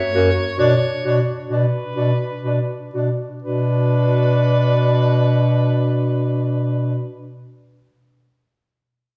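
A clear soprano saxophone with light vibrato opens this solemn, melancholic classical fragment for single-reed quartet in B minor, joined at 0.1 seconds by a vintage-toned clarinet carrying a background second line, a warm tenor saxophone with vibrato in accompaniment and an up-front bass clarinet anchoring the bass, the quartet moving at a rubato 65 BPM in 3/4 that slows through the opening 3.4 seconds as the harmony settles from F# to B minor, with the soprano and tenor sounding distant in a wet, roomy scoring-stage reverb.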